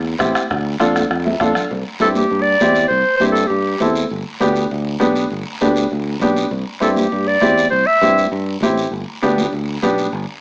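Cumbia at a brisk 199 BPM in C major, sunny and festive, this short excerpt has a clear, woody upright piano up front with audible action noise, a bright, growly fingered electric bass, a soft-beaten bombo that drops out at 1.7 seconds as a piano fill and a drum fill close the opening section, high-tuned congas in the background, a raspy guiro, and a smooth classical-style clarinet carrying the melody in two phrases starting at 2.0 and 6.8 seconds, all with light reverb and a small-speaker sound.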